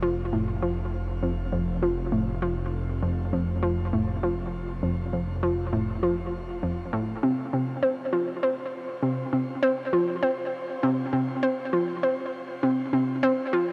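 Bathed in a long, shimmering reverb, this mysterious, expansive stretch of ambient, sequencer-driven space music moves at 100 BPM in a straight 4/4, tuned to A4 = 441 Hz: a bright, nasal analog pluck riff sits up front with a fast filter pluck, chorus and tape echo, playing for the full 13.7 seconds, while a fat, detuned analog bass sustains a low F under the opening F chord until 7.2 seconds, when the bass stops and the harmony moves to Csus4.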